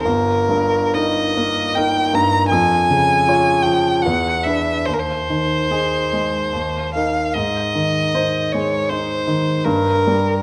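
A dark, reverberant recital-hall sound surrounds this short romantic classical excerpt, with a solo violin and a baby grand piano both placed up front. The rich, focused violin carries a tender melody with vibrato, while the clear, intimate piano accompanies with long sustain and audible action noise. The music moves in a rubato 3/4 at around 64-81 BPM in Ab major, reaching an Ab chord near 7.3 seconds.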